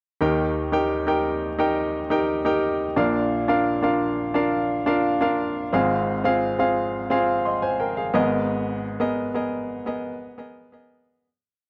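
A dry, close studio sound with the feel of the 1970s and a touch of light reverb frames a clear, polished baby grand piano playing alone, up front and present with a short sustain. This brief, romantic and glossy pop piece moves through a single verse of syncopated chords in drop2 voicing, dotted with short fills, the piano spanning from deep bass notes to a bright upper register. A fade-out begins at 8.5 seconds and carries the piece to its close at 11.2 seconds.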